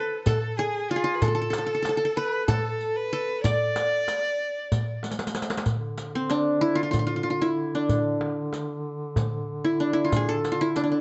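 A bright-edged, plectrum-plucked qanun carries the melancholic, longing melody in D makam nikriz, shadowed by a rich, expressive violin line full of vibrato and portamento, while an up-front clay-shelled darbuka and a compressed riq with dark jingles drive the straight 7/8 pulse at 189 BPM in eighths; the violin stops at 5.0 s, a drum fill leads to a new section at 5.7 s where a mellow duduk enters with a scooped, folk-style drone on D3, all in a dark production with moderate studio reverb.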